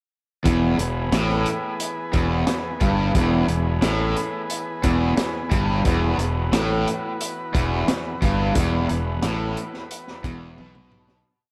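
A crunchy breakbeat groove in straight 4/4 at 89 BPM sets a hazy, hypnotic psychedelic rock piece in E major, with the acoustic kit's punchy kick, high-tuned snare, hi-hat and toms sounding dark, gritty and saturated in a small room with a rolled-off top. A cranked stack guitar opens the piece at 0.4 seconds with a bright, double-tracked single-note riff low in its range, up front in the mix and coloured by overdrive, harmonic tremolo and analog delay. The fuzz fingered electric bass doubles that riff in a dotted figure, its tone round and overdriven. Above them, an overdriven combo organ holds a vintage, buzzy pad of sustained chords with heavy vibrato, sitting further back. Light reverb and an echo-heavy mix wrap the repeating riff until a fade-out begins at 8.6 seconds, and a drum fill arrives at 10.6 seconds as the piece closes.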